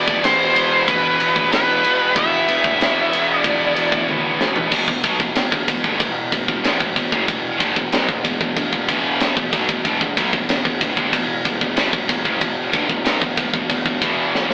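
A rough rehearsal-room recording with an AM-radio cast and moderate reverb carries this aggressive, epic heavy metal excerpt at 94 BPM in straight 4/4, where a bright, up-front high-gain lead guitar states a short melody until 4.0 seconds over a stack of distorted riffing guitars (a heavy high-gain part in the background, a very quiet high-gain part and a double-tracked thick fuzz part), a growly overdriven fuzz bass and a tight, gritty metal drum kit with a high-tuned snare and rolled-off top, whose fill at 4.1 seconds leads from the opening E5 into an Em section.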